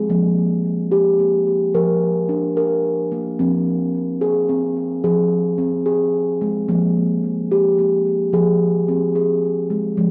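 World meditative music in F minor at 73 BPM in a straight 6/8, this hypnotic fragment of a longer piece features a solo steel tongue drum, round and ringing under soft rubber mallets and placed up front, drifting through Fsus2/4, Bb over F and F minor chords amid a diffuse ambient delay, a wet echo chamber reverb and the warbling pitch drift of worn cassette tape.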